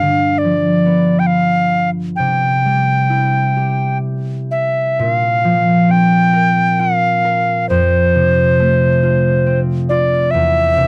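This is a dry, close recording in a 1970s studio style, with a light touch of reverb around it. It is a short cut from a longer Celtic slow air in 3/4, played rubato, and its mood is haunting and full of longing. A tenor recorder carries the melody up front from start to finish, its airy wooden tone straight and tongued, with a clear chiff and a close-miked presence. Beneath it, a concert harp plays a fingerpicked accompaniment that is acoustic and ringing, also sitting up front in the mix. The harmony moves from G7 to C, shifts at 5.0 seconds into a second section on Bbsus2 and F, and arrives on C/E at 10.3 seconds.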